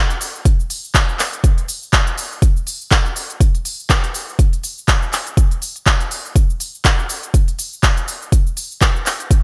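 A swung 4/4 house groove sets a smooth, late-night mood, as a deep house drum kit of cabasa, handclaps and smooth hi-hats enters at 0.1 seconds with small-room and gated reverb, joined at 0.5 seconds by a deep, layered electronic kick sitting up front in a small room, all framed by a bright 1980s-style digital ambience in this brief cut from a longer piece.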